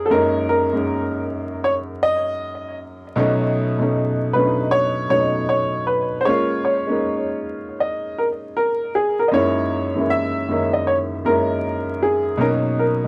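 A home cassette recording with vinyl crackle and a short, wet booth ambience gives this mellow, nostalgic hip hop excerpt its worn, close-up character. At 78 BPM in 4/4, with a 64% swing on the sixteenths, it sits in F# major and unfolds as a single passage moving through F#6, B9, A#m7, F#13 and Bmaj7. Two upright pianos play together from 0.0 to 13.1 s. A felt-muted upright carries the accompaniment in the lower and middle register, its soft, intimate tone thin with felt and quick to fade, placed up front on cassette tape. Above it, a woody, polished upright sings the melody between G#4 and E5, slightly louder and present, colored by tape and an analog delay.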